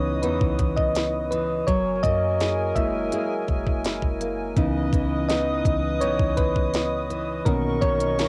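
Recorded at home on cassette with a touch of reverb, this moody, late-night contemporary R&B fragment centres on round, mellow electric-piano-like synth keys with chorus carrying the lead up front. Beneath them sit a hollow, flute-like pad with chorus and sidechain pumping, fingerpicked nylon-string guitar arpeggios trailing tape echo, and a deep, boomy 808-style bass. A trap kit of knocking kick, sharp snare and crisp hats enters at 0.2 seconds, over a progression of C#m9, F#9 and Bmaj9 chords.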